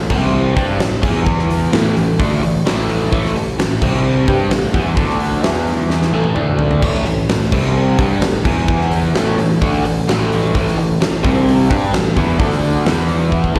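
A straight, driving 4/4 pulse carries this swaggering classic rock clip, cut from a longer piece and built on a single riff-based passage that plays twice. Up front, an overdriven semi-hollow guitar, dark and double-tracked, picks out the riff in power chords drawn from C5, A5, E5 and D5, colored by a phaser and slapback echo. A huge arena drum kit sits equally forward, with a fat snare, punchy kick and bright cymbals alongside hi-hat, crash and toms, and a drum fill arrives between 5.9 and 6.8 seconds before the passage repeats, with another at 13.3 seconds. Further back, a modern bright picked electric bass adds a growly, direct low end beneath the guitar. The whole performance comes across as a live gig heard through the venue's PA, with a light reverb giving it the air of a recital hall.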